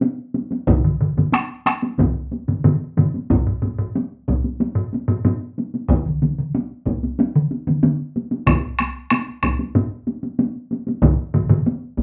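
Powerful and driving, this cut from a longer Japanese traditional taiko drum piece in straight 4/4 opens with a taiko ensemble struck with heavy sticks in a small-room sound, joined at 0.7 seconds by solo taiko drums played with hard sticks and a vintage, band-limited tone, a second ensemble miked close, and a third with weighty sticks and an aged, narrow-band color, all up front and playing live together under wet studio reverb as the pace keeps speeding up.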